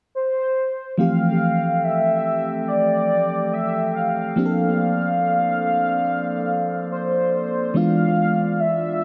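Awash in tape echo and a lingering plate reverb, this tender, romantic contemporary R&B excerpt has a gently swung, unhurried feel. A velvety, detuned synth lead with vibrato and chorus carries the melody from the opening moment. At 1.0 s it is joined by a round, warbling vintage FM electric piano up front and a pure, ethereal glass harmonica holding sustained chords further back, as the harmony moves from Fmaj9 to Bbmaj9/F and reaches E7b9 at 7.7 s.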